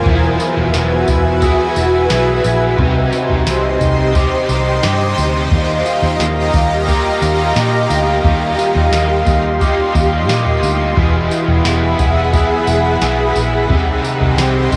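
A shimmering, ethereal pad sits up front in this dreamy, blissful dream pop excerpt, its detuned, slow-attack chords wrapped in chorus and plate reverb, alongside a bright, double-tracked overdriven guitar with harmonic tremolo and a slightly broken-up guitar playing arpeggios through tape echo in the background. From 0.1 seconds, a dark, round, foam-muted fingered bass and a soft vintage rhythm box settle underneath, the drum machine's deep kick, crisp snare, tambourine and toms sounding re-recorded in a large room. Chords move among Eadd9, Cm and Ebadd9, and the piece carries the character of a home cassette recording with light reverb.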